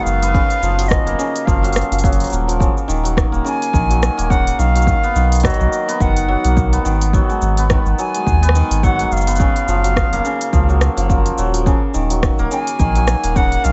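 Delicate and wistful, this folktronica passage, cut from a longer piece, sets an airy, bright wooden flute melody over shimmering, ringing hammered dulcimer arpeggios, both bathed in plate reverb and tape echo. A round, mellow sine sub bass sits up front beneath them, while a deep electronic kick and an electronic kit of cabasa, smooth hi-hat and rim click, both overdriven and set in a small room, add a lightly swung groove. The chords move through Gbmaj7, Ebm7, Bmaj7 and Abm7, and the mix stays soft-edged with light reverb and a gentle top end.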